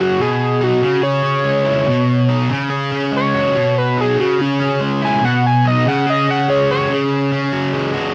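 This rock excerpt moves at an upbeat, jangly 143 BPM in a straight 4/4, tuned slightly sharp to A4 = 441 Hz and cut from a longer piece. An overdriven analog synth lead carries the melody as a solo from the start until 6.9 seconds: a gritty, screaming, guitar-like tone built from sawtooth and square waves, with a fast attack, sustained notes, vibrato and a tape echo trailing behind it. Under it, an up-front fuzz guitar plays a bright, picked riff, double-tracked and compressed, running from the opening through to 8.1 seconds, so it briefly carries on alone after the synth drops out. The harmony circles between B, C#m and C#sus4. A light reverb and the saturated character of a home cassette recording give the whole track a raw, lo-fi edge.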